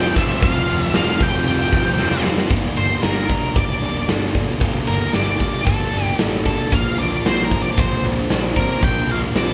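A straight 4/4 pulse at 114 BPM drives this angsty, cathartic alternative rock excerpt in G minor, where a huge, punchy arena drum kit with bright cymbals sits up front in a pumping room, a thick fuzz guitar riff and growly fuzz bass churn in the background, a biting overdriven guitar riff drops out after a drum fill at 2.0 seconds, and from 2.5 seconds a boxy, picked old ladder-braced acoustic guitar adds arpeggios beneath an octave-fuzz lead guitar solo, with chords moving from Fsus2 to Gmadd9 and on to Bbadd9 at 6.7 seconds, all captured as a band playing live in one large reverberant studio room.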